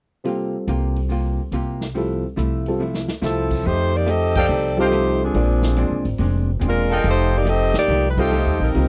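A clear, up-front saxophone section carries the melody with jazz-style vibrato in this joyful, brassy big band swing excerpt at 142 BPM in 4/4, played in F major before shifting to F mixolydian at 3.7 seconds. Underneath, a woody, thumpy upright bass plucked on steel strings sits up front from 0.7 seconds, while a deep-bottomed concert grand piano and a dark, clean, compressed hollow-body archtop guitar fill in the accompaniment. The swinging drum kit sounds airy and polished, with a punchy kick, a medium-tuned snare, hi-hat and crash, and a fill at 2.8 seconds ushers in the saxophones at 3.2 seconds. A vintage-toned trumpet section enters at 4.4 seconds with vibrato-laden stabs, and the full band hits accents at 4.3 and 8.1 seconds. The chords move from C7sus4 and Fmaj7/C to F9 and Bb9, all captured in a dry, close 1970s-style studio sound.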